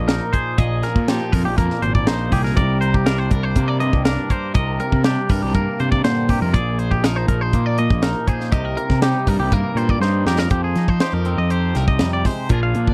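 A dry, close studio sound in a 1970s style frames this intricate, restless math rock and midwest emo excerpt in C minor at 121 BPM, where two clean, compressed, twangy electric guitars (a warm, phaser-tinted accompaniment part and a bright arpeggio line) ride over an up-front, fuzz-overdriven picked electric bass and a crisp, polished fusion drum kit with a high-tuned snare and tight kick, moving through Bb7sus4 and Cm9 harmonies toward a drum fill at 10.0 seconds that leads into an Fm11 passage at 10.5 seconds.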